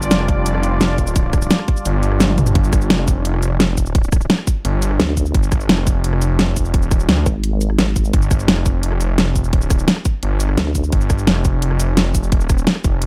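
Mechanical and tense, this excerpt of dark technical drum and bass opens with a deep, moody pad of detuned sustained chords that drops out at 2.5 seconds, while a thick, lush detuned saw bass with overdrive and sidechain pumping drives underneath. An up-front dubstep kit with a huge snare, bright hats, rim click, shaker and toms plays alongside a tight, tape-warm electronic kick that enters at 0.3 seconds, and a drum fill at 2.3 seconds leads into the drop. From 5.0 to 8.1 seconds a nasal, resonant vowel-sweep wobble bass cuts in, saturated and compressed, in a dry, close mix.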